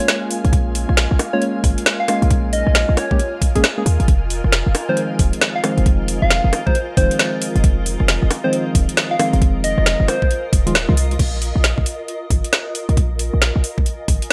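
A skippy, late-night two-step garage cut at 135 BPM in Bb minor, with swung 16ths, opens with a round, FM keys-like synth lead carrying the melody over hollow, wave-folded organ stabs, a breathy phased pad in the background and a blurred, evolving granular cloud, while an up-front, overdriven garage kit of woody snare, metallic hats, rim clicks, bongos and crash sits in a small room. A tight, punchy 808-style bass with sidechain pumping and a knocking, overdriven kick join by 0.5 seconds, driving the Bbm7 to Fm7 changes in a bright 1980s-style digital production with light reverb. The lead drops out at 10.4 seconds, and from 11.2 seconds the drums, bass and granular cloud carry a Bb5 section to the end of this cut from a longer piece.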